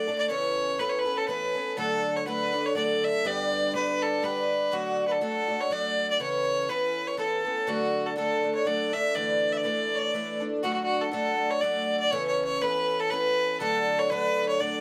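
A bowed fiddle and a picked twelve-string acoustic guitar begin together at the very start of this bright, rollicking Celtic waltz, a short cut from a longer piece in D major at 122 BPM in 3/4 with a gentle swing on the eighth notes. The single fiddle carries the melody with a biting, nasal edge and light vibrato, its earthy tone sitting up front yet with a faintly distant quality. Beneath it, the twelve-string supplies the accompaniment, its octave-doubled courses giving a shimmering, woody and slightly boxy sound with the mellow dullness of old strings. The harmony circles around D, G and an Aadd9 over C#, touching a Dsus2 before the opening phrase returns at 10.6 seconds. Both instruments play throughout the 14.8 seconds, captured by close, detailed microphones in a dry room with little reverb.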